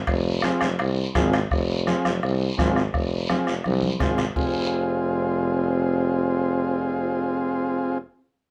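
A fiery, driving cumbia fragment opens at 0.1 seconds with an up-front warm tuba bass, soft-beater bombo, raspy guiro and ringing background timbales; a reedy combo organ with heavy vibrato and background congas join at 0.4 seconds, and after a drum fill the percussion drops out at 4.4 seconds, leaving the tuba and organ over light reverb.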